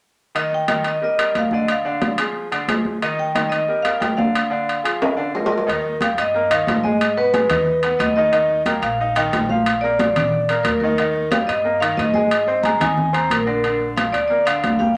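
A straight 4/4 salsa groove drives along at 181 BPM, with high-tuned congas played with soft hands and metal-shelled timbales sitting up front in a lively room. The mood is joyful and sunny, set in Eb major and cut from a longer piece. A vibraphone struck with hard mallets carries the melody with a metallic, vintage, band-limited ring, its motor off. Beneath it a brilliant, polished grand piano supplies accompaniment with long sustain, moving from Eb and Ddim toward richer colours like Ebadd9, Abm and Bbadd9. After a drum fill, a woody, growly pizzicato upright bass on steel strings enters at 5.7 seconds, adding a thumpy low end. A wet club ambience wraps the whole band.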